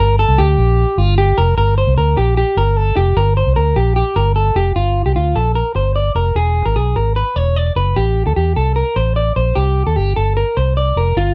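An electric guitar through a small old amp and a muted, fingered electric bass open together on this excerpt of jangly indie pop in G minor, moving at a straight 150 BPM in 4/4 with a wistful, restless mood. The guitar spins arpeggios in a slightly broken-up, lo-fi, compressed tone touched with slapback echo, while the dark, round, foam-muted bass sits up front beneath it. The dry, close 1970s-style studio sound keeps both parts intimate as the harmony shifts from G minor to E7 at 6.4 seconds, then through Am7 toward C7.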